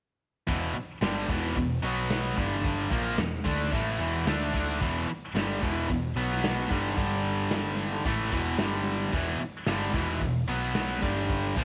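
A lightly reverberant small-room sound frames this brooding, gritty classic rock excerpt in E minor at 111 BPM, where a bright, overdriven cranked stack guitar and a tight distorted guitar, both picked and up front, play a riff over Em, B5 and G5 chords, joined by a round, dark hollow-body short-scale picked electric bass and a saturated garage drum kit with a punchy kick, medium-tuned snare, hi-hat and rolled-off top, all sounding together from 0.5 to 11.6 seconds.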